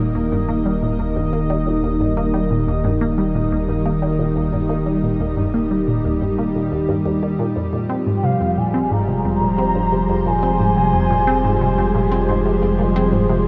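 A steady, straight 4/4 pulse at 89 BPM drives this expansive, cosmic slice of sequencer-driven space music in Eb major, where a lush, thick unison pad holds warbling chorused chords under shimmer reverb, a juicy, squelchy blip pluck repeats its resonant riff through phaser and delay, a round, deep analog bass anchors the low end, and from 8.2 seconds a smooth, expressive synth lead with vibrato sings a brief high melody, all bathed in a huge, wet ambient reverb as the harmony shifts from Eb to Fmadd9 at 7.6 seconds.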